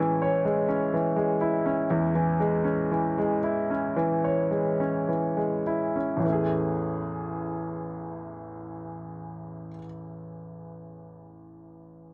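Heard through worn, warbling cassette tape with a warbly drift in pitch and a touch of light reverb, this short pop excerpt has a hopeful, heartfelt mood in A major, opening on an Amaj7 chord. A clear, intimate baby grand piano plays as accompaniment from 0.0 to 12.1 seconds, sitting up front with a natural tone and audible action noise. The slow tempo, between 49 and 63 BPM in a straight 4/4, eases down through the first 6.2 seconds before the music moves into a new section.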